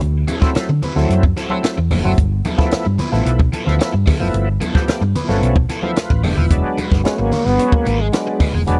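Funk with a strutting groove, cut from a longer piece: a dark, round hollow-body bass and a tight cocktail kit with a high-tuned snare and punchy kick sit up front, while an overdriven guitar with phaser, gritty tonewheel organ stabs with key click and slow rotary speaker, and very quiet ringing congas fill out a dry, close 1970s-style studio sound, before a forceful, scooped trombone solo enters at 7.0 seconds.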